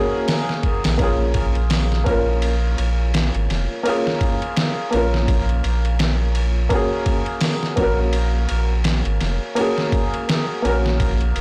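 A deep, round dub sub bass sits up front from 0.9 seconds, holding sustained low notes under a cinematic, melancholic trip hop fragment in Bb minor at 84 BPM with a swung sixteenth feel. The felt-muted upright piano opens at 0.0 seconds with mellow, intimate chords moving between Gbadd9 and Bbm7, coloured by harmonic tremolo, tape echo and vintage sampler grit. At 0.3 seconds a pitched-down, muffled sampler-style kit enters with a thumpy kick, snare, hi-hat and ride, compressed and overdriven, all inside a blown-out recording with light reverb.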